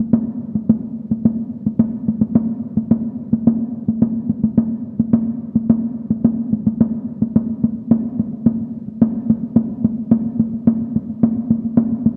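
In a straight, steady four-beat pulse, solo taiko drums struck with heavy sticks sound close and up front, ringing into a lush concert-hall reverb that gives this ceremonial, powerful Japanese traditional fragment its grandeur, with a new section arriving at 7.3 seconds before the cut at 12.2 seconds.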